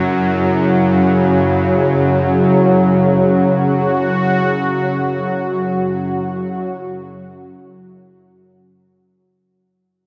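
Dark ambient drone, desolate and cavernous, where a tense, string-like bowed drone with detuned, ring-modulated edges and vibrato sits up front beside an airy, resonant sweeping pad holding sustained chords through chorus, while a very quiet bronze singing bowl, struck with a felt mallet, rings mellow and metallic beneath them inside a huge, wet reverb as the sound fades out from 2.8 to 9.4 seconds.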